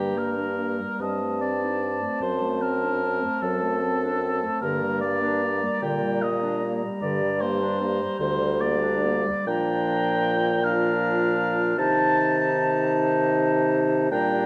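Yearning and melancholic, this slow romantic wind-quintet movement in G minor sways in 6/8 at 50 BPM with supple rubato: a pure, distant silver flute carries the melody above an up-front oboe with light vibrato on the second line, while a clear, soft-attacked French horn and a roomy clarinet fill the accompaniment and a warm bassoon anchors the bass, the quintet sitting in a moderate scoring-stage reverb.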